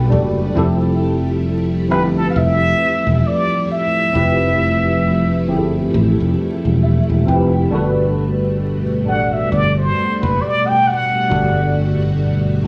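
A worn, slightly out-of-tune tine electric piano opens with a brief fill over a Gmaj9 chord before the harmony shifts to Fmaj9, alongside a growly fretless bass up front and a lush, vintage string machine with slow-attack sawtooth chords, in a smooth, relaxed neo-soul R&B groove at 67 BPM with a swung sixteenth feel. At 1.9 seconds a brilliant, forceful plunger-muted trumpet takes the solo melody, its wah-wah vibrato carried on tape echo in a jazz style, and the electric piano adds another fill before the harmony returns to Gmaj9 at 7.7 seconds. Light reverb, vinyl crackle and studio ambience give this short cut from a longer piece a lived-in, intimate sound.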